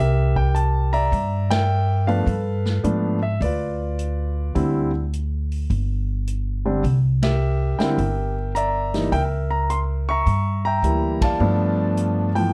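The recording is dry, with little reverb, a short cut from a longer jazz piano trio performance with a sophisticated, playful mood and a swung eighth-note feel in 4/4. The concert grand piano carries the melody from D3 to C#6, sitting up front with an intimate, polished tone, deep bass, long sustain, audible action noise and a touch of slapback echo. The upright bass is also up front, played pizzicato on steel strings with a woody, warm sound. The big-band drum kit sits further back in a roomy studio space, with hi-hat, ride cymbal, a medium-tuned snare and a boomy kick, its top end rolled off. The harmony moves through rich extended chords such as C9, G9 and D9sus4, passing through a C#dim7, while the whole trio hits accents together at 1.4, 7.1 and 11.1 seconds.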